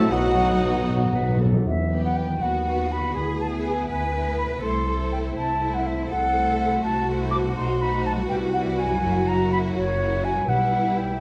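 In a 6/8 pulse, this urgent, dramatic orchestral passage, cut from a longer piece, sets an airy flute line up front above a soft-edged violin melody in the background. Beneath it run a second, lush violin section, smooth viola accompaniment, ringing thumb-plucked harp arpeggios, and a focused cello section and rich double basses carrying the bass throughout. The opening moments are crowded with brief color: a clear oboe, a very quiet mellow clarinet, distant French horn chords, trumpet stabs and a faint tuba all fall away within the first two seconds, while close calf-head timpani on medium mallets play a fill from 0.1 s and return at 10.5 s, all set in a moderate, roomy stage reverb.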